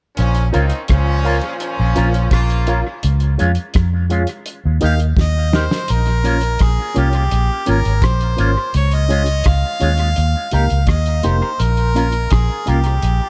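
Roots reggae at 84 BPM in Bb dorian, laid-back and meditative, cut from a longer piece and set in an echo-heavy small room. A dark, round, foam-muted fingered bass sits up front beside a cloth-damped, thuddy drum kit with a fat snare and tight kick, while a twangy envelope-filtered guitar is picked in the background and a reedy electric piano adds stabs through a fast tremolo. A distant, loose horn section with vibrato opens briefly, a drum fill at 5.2 seconds leads into the second half, and a punchy harmonica carries the melody from 4.8 seconds over a cycle of Bbm, Db and Eb.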